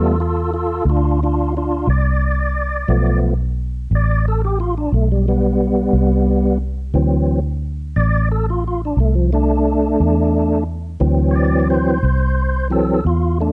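A dark, warm production with light reverb and a rolled-off top end frames this short excerpt cut from a longer slow blues, moving at 59 BPM in a straight 12/8 feel with a soulful, laid-back mood. The tonewheel organ carries the solo from 0.0 to 13.5 seconds, holding fat, lightly overdriven chords through a slow rotary speaker with chorus vibrato and an audible key click, ranging from E3 to D5. Beneath it, a vintage muted fingered electric bass sits up front with a round, foam-muted, amped tone, staying low between A1 and E2. The harmony rests on G7 before shifting to D7 at 6.9 seconds, giving the passage an unhurried, soulful glow.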